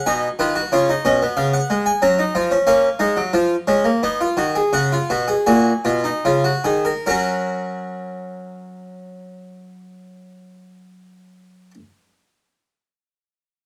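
A full, plucked Italian-style harpsichord with two sets of strings sits up front in this joyful, stately excerpt of a baroque-style three-part fugue in triple time, tuned to A4 = 435 Hz, closely and finely miked in light reverb, with the pace slowing from 1.7 to 7.1 seconds before the second section opens on a return home.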